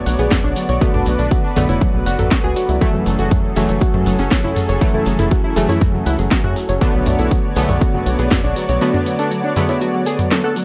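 Melancholic and hypnotic, this melodic techno excerpt cut from a longer piece rides a lush, nasal unison pad and a thick, bold unison lead with vibrato over chords moving from Bm7 to F#m7 and back, while punchy, brassy synth stabs with analog delay and a woody, wave-folded pluck playing arpeggios in the background fill out the sound, all of these pumping against the sidechain. Underneath, a tight, driving sequencer bass with tube saturation and a punchy, up-front electronic kick push things along, joined by a house drum kit with a cracking snare, crisp hats and toms and a grainy egg shaker, until the kick drops out at 8.4 s and the bass at 8.8 s. The whole piece has a dry, gritty hardware character set in digital ambience.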